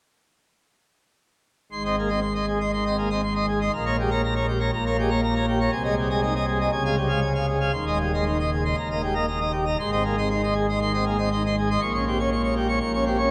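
Classical organ toccata in A-flat major at 119 BPM, majestic and jubilant, with a solo pipe organ playing full plenum with mixtures from 1.7 to 13.3 seconds in a brilliant, romantic voicing that sits up front. The organ spans from a deep low Eb1 to high Db6, moving through A-flat, G diminished over B-flat, D-flat and E-flat harmonies. It rings out in a cathedral with a long, wet reverb that lingers for about 6.8 seconds, and the passage is cut from a longer piece, tuned slightly low at A4 = 436 Hz.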